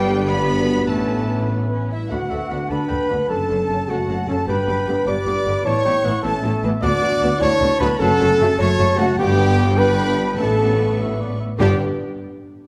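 In a 6/8 metre at 101 BPM in G lydian, this heroic, soaring cinematic excerpt carries its melody on a lush violin section in the background, joined by a second violin section, an airy silver flute, a mellow cor anglais and a smooth-topped clarinet that enters at 1.9 s, while a close viola section accompanies, vintage French horns and very quiet trombones hold sustained chords, a ringing harp plays arpeggios, a trumpet adds stabs, and cello and double bass sections anchor the bass, all set in a scoring-stage reverb.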